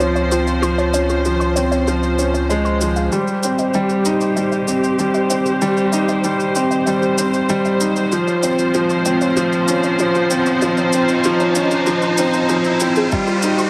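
Piano and strings electronica at 96 BPM in a straight 4/4, this excerpt from a longer piece feels hopeful and tender, moving between Dbmaj7 and Cm/G chords. A clear concert grand piano sits up front with a short, smooth riff, its vintage tone carrying a deep bass and a digital delay, while a rich symphonic string section holds bowed chords with light vibrato, pumping under a sidechain and shaped by a low-pass filter. Underneath, a very quiet warbly, dusty pluck spins lo-fi arpeggios with detuned chorus and a noise layer, and an electronic shaker with a tape-warm grain keeps time. A round, dark analog bass anchors the opening on Db2 before dropping out at 3.1 seconds, when filter sweeps on the strings begin a build-up and a background riser joins at 6.8 seconds. A muffled, thumpy electronic kick lands once at 13.1 seconds, and the whole mix rests in light reverb.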